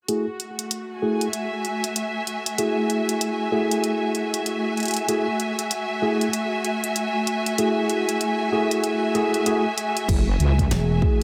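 A gritty, swaggering glitch hop excerpt in F# minor at 96 BPM, bathed in a lush hall reverb, opens on an F#m9 chord with up-front tine electric piano stabs, roughened by vintage 12-bit sampler grit, sidechain pumping, low-pass filtering and digital delay, over smooth bowed symphonic strings with rich vibrato and a pop drum kit with a fat snare, hi-hat and crash on a swung 16th feel. At 10.1 seconds the piano takes a filter sweep while a punchy electronic kick, a heavy, saturated wobble bass with chorus and a warbling, lo-fi tape-like pad in the background arrive together. A bright, foam-muted thumbed slap bass lands on E1 at 10.7 seconds before the piece is cut off.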